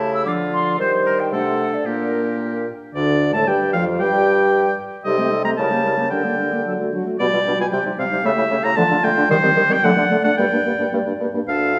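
The bright oboe sits up front, carrying the second line with a light vibrato in a poised classical manner across the full 11.8 seconds of this quick, restless wind quintet movement in a straight 2/4. Above it, the silver concert flute takes the melody, its airy, metallic straight tone and crisp attack heard at a distance, in the background. The mellow clarinet and the dark French horn, both smooth on top, fill in the accompaniment, while the bassoon anchors the bass with a soft attack, a gentle vibrato and a roomy, faraway placement. The opening phrase returns at 3.0 seconds, and the harmony turns stormy through diminished and half-diminished colours, with a brief unharmonized moment at 4.0 seconds before settling on G minor at 10.4 seconds. A wet scoring-stage reverb and a small room ambience surround the ensemble in this passage, cut from a longer piece.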